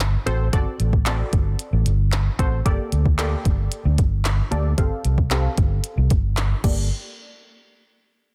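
A short, driving dance-pop fragment opens with a dark, round electric bass, muted and amped, pumping against a glitchy electronic drum kit of soft kick, tiny snare, clicky hi-hats, handclaps and crash cymbal, its overdrive pushing it up front. At 0.3 seconds a punchy sawtooth chord stab joins, detuned and thickened with chorus, its fast attack decaying as it sits lower in the mix beneath a low-pass filter sweep. The stab shares the bass's sidechain pumping, giving the groove an energetic, breathing push. The harmony moves from D7 over G through Gmadd9 and Fadd9 over G, landing back on Gmadd9 before the parts stop around 6.9 seconds. A digital ambience surrounds the whole, and the dense, heavily limited master keeps it loud and forceful.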